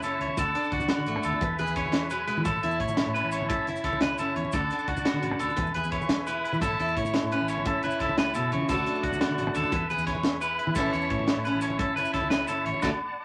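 Highlife guitar band in a carefree 12/8 groove at 116 BPM in A major, cycling through D, E and A chords. A twangy, slightly broken-up electric guitar plays arpeggios up front over a boxy parlour acoustic guitar with finger squeak, a round foam-muted fingered bass and a reedy tonewheel organ holding sustained chords in the background through a slow rotary speaker with chorus vibrato and key click. A tight funk kit with a high-tuned snare drives the rhythm with ringing, distant agogo bells, grainy maracas and damped congas entering at 0.3 s, all set in a small room with vinyl crackle before a band accent at 12.8 s closes this cut from a longer piece.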